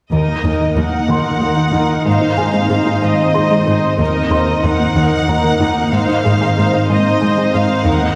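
A wet scoring-stage reverb places this brooding, relentless cue further back in the room, blending a hybrid orchestral and electronic film-score palette in a straight 6/8 feel. A string section carries the core, with violins singing a lush, focused melody with a smooth top, violas filling in close, bowed accompaniment, and cellos anchoring the bass with expressive portamento and vibrato. Beneath them an analog pluck sits in the background, its round, nasal, detuned sawtooth tone spinning arpeggios through chorus and digital delay. An ethereal, airy pad enters at 0.7 seconds with slow-attack sustained chords bathed in ensemble chorus and its own reverb. From 1.1 seconds a soft, felt-muted upright piano adds an intimate texture high in its range, its action noise audible and its notes echoed by digital delay. The harmony rocks between Ebm and Ab in this short cut from a longer piece.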